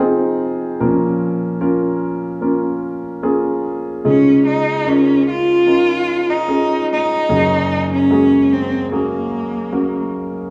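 A warm concert grand piano with a deep bass opens this hopeful, emotional pop ballad, cut from a longer piece, before a single rich, focused bowed cello with vibrato and a smooth top enters up front at 4.1 s to carry the melody over the up-front piano accompaniment, all set in a small room ambience with a lingering recital hall reverb.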